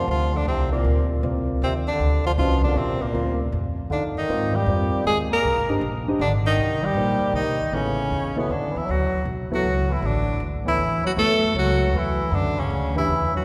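A clear, up-front tenor saxophone carries the melody with vibrato, soft attacks and scooped notes, joined from the first moment by a bass clarinet's second line with lighter vibrato and a growly, woody pizzicato upright bass, all swinging in a hypnotic, spiritual modal jazz waltz. A dark, mellow baby grand piano enters at 0.7 seconds with long-sustained accompaniment, and the harmony shifts to a new center at 8.9 seconds. The whole fragment sits in a wet church reverb with a lingering tail.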